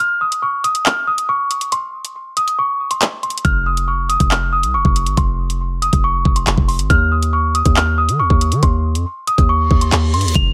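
A delicate, bell-like celesta opens this tense, ominous drill cut at 139 BPM in a half-time feel, its high melody softened by a low-pass filter and trailed by digital delay, with a tape-warm electronic drum kit of knocking kick, hi-hats and handclaps entering almost at once. At 3.4 seconds the hard-hitting 808-style bass lands up front, punchy and heavy with a sine body, a noise layer and a fast, decaying attack. A reverse cymbal rises from 9.7 seconds into an electronic impact as this fragment of a longer piece, tuned to A4 = 444 Hz, cuts off.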